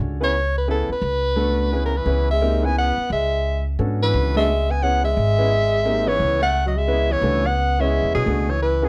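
Cool and searching, this brief modal jazz excerpt cut from a longer piece swings at 174 BPM in 3/4 in C# phrygian over a C#m7 chord, with a woody, pizzicato upright bass and a clear concert grand piano with long sustain underneath a warm, subtoned soprano saxophone melody entering at 0.2 seconds with scooped notes and light vibrato, joined at 1.9 seconds by a mellow, distant tenor saxophone second line, all in a dark production with light reverb.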